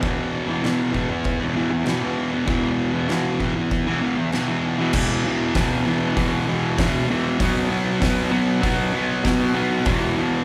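Rowdy and raw, this short garage rock cut from a longer piece moves at 98 BPM in a straight 4/4, with the feel of a duo or trio playing live together in one room. A bright, double-tracked fuzz guitar sits up front, picking a distorted riff between E2 and B3 over power chords that move from E5 to B5 at 7.4 seconds and back to E5 at 9.9 seconds. Underneath, an oversized, low-tuned acoustic drum kit pounds out the beat with a boomy kick, a fat snare, a hi-hat and dark crash cymbals, sitting lower in the mix than the guitar. The kit carries the pumping character of a bright stone room, while a moderate large studio reverb adds space around the whole performance. The drums stop at 10.0 seconds, leaving the guitar to ring on alone until 10.4 seconds as the second section closes.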